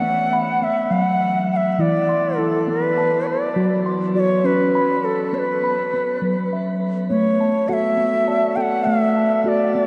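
A bright, reedy bansuri leads with an airy, bamboo-toned melody, its vibrato and soft attack sitting up front in shimmer reverb and a diffuse ambient delay. Alongside it, a steel tongue drum struck with rubber mallets plays round, pure, ringing arpeggios, dark and smooth, in a hypnotic, gentle B minor world meditation at 68 BPM in a straight 6/8. The pair drift through a vast, echoing cathedral-like space with a cassette tape tint, shifting to a new section at 7.1 seconds in this fragment cut from a longer piece.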